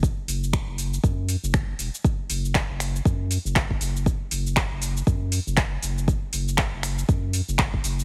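A swung sixteenth-note groove in 4/4 drives this hypnotic afro house clip, where a deep, up-front electronic kick and a produced afro-pop kit of finger snaps, handclaps, shaker and metallic hi-hats sit over a round, dark, nasal analog bass that pumps against the sidechain, all pressed into a heavily compressed, radio-like sound.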